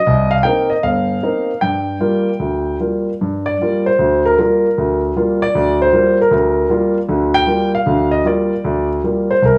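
Swung eighths that stretch and pull in rubato carry this cool, late-night solo jazz fragment cut from a longer piece, where an intimate, up-front grand piano with audible action noise and long sustain ranges from deep bass to upper register, moves from Cm7 to Gm7, and opens into a solo passage at 3.2 s, all set in a moderate club reverb and small room ambience.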